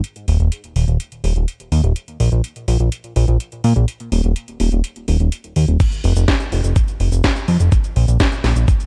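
Bittersweet and melodramatic, this short italo disco excerpt moves at 125 BPM in a straight 4/4, built on a fat, detuned analog bass of sawtooth and square waves that sits up front with a sustained, mellow tone, a moving notch and a filter sweep, ranging from Eb1 to Bb2. Behind it, a layered electronic house kit sits lower in the mix, with a cracking snare, metallic hats, cabasa and crash cymbal, all tape-warm and re-recorded in a small room. At 5.8 s a compressed, gritty sampler-style kick enters with a thumpy punch, anchoring the dark production, which carries little reverb.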